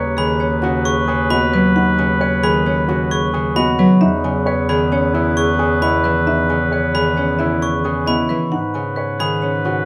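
Classical minimalist pattern music in G# minor, hypnotic and urgent at 133 BPM in 5/4, where a woody, dark marimba carries the melody in the background while a distant oboe holds a second line, a fingerpicked, ringing Celtic harp accompanies, a grand piano spins arpeggios joined by a bright, sparkling glockenspiel from 0.2 s, and a roomy bass clarinet anchors the bass, all captured with close, detailed microphones in a large studio reverb over chords moving from G#m7/D# to C#m7/E and back to G#m7.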